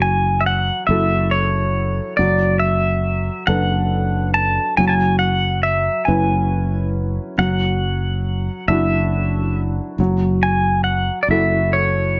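A bright, twangy pedal steel guitar sings a heartbroken melody between C#5 and A5 from the first moment, played with fingerpicks, slide and volume swells, over a felt-muted upright piano whose soft, intimate chords carry audible action noise and a growly fretless electric bass sustaining a low F# pedal. This reflective acoustic folk-pop ballad moves slowly at 46 BPM in a straight 6/8 in F# minor, its chords drifting from F#m7 through Bm7, C#m7 and Dadd9 over that held F# before returning to F#m7 at 10.0 seconds. The steel and the punchy bass sit up front, with the mellow piano further back and the whole mix bathed in light reverb, in this 12.2-second cut from a longer piece.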